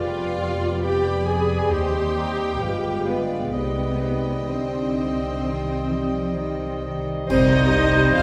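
Elegiac and melancholic, this slow romantic movement for symphony orchestra moves at 62-72 BPM in 4/4 with a rubato feel, set in C minor and cut from a longer piece. A lush violin section carries the melody with smooth vibrato, sitting back in the texture, while a second, focused violin section, a clear and punchy cor anglais, an airy, hollow flute and a very quiet close-miked clarinet weave secondary lines around it. A dark bassoon and a rich viola section fill in the accompaniment, a French horn section holds sustained chords until 7.6 s, and cello and double bass sections anchor the bass. The harmony passes through G7/F, Cm/Eb and G7b9 before settling on Cm at 3.5 s. At 7.3 s a band accent arrives as a distant, roomy tuba joins the bass and clash cymbals with concert bass drum add dark, dry weight. The whole ensemble is heard from further back in a reverberant recital hall, giving the sound a soft, mournful glow.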